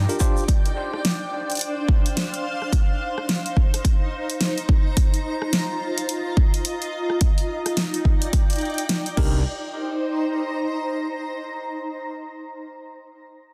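A cloudy, evolving granular pad and a brief flicker of swirling, saturated detuned saw bass open this gritty, funky glitch hop excerpt in C minor at 107 BPM, joined by mellow stabs from a worn, slightly out-of-tune tine electric piano soaked in dub echo. A punchy electronic kick and a pop kit with a fat snare, crash, hi-hat and rim click drive the swung groove, both up front in a small room, while a grainy, bright tube shaker adds a short touch and the chords move through Dm7, F7sus4 and Ebmaj7. The drums stop at 9.3 s as bass and piano return on Cm7, leaving the sidechain-pumped pad to drift alone until 11.7 s.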